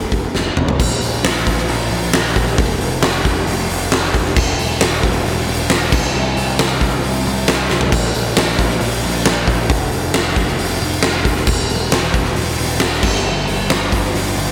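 A straight 4/4 groove at 135 BPM drives this cathartic, anthemic slice of quiet-loud alternative rock, tuned to A4 = 438 Hz and cut from a longer piece. A huge arena drum kit sits up front, with a fat snare, a punchy kick, toms and bright crash and hi-hat cymbals in a hall sound, and it throws in fills at 0.4 and 7.7 seconds. Underneath, a picked electric bass growls low with overdriven fuzz, all set in light reverb.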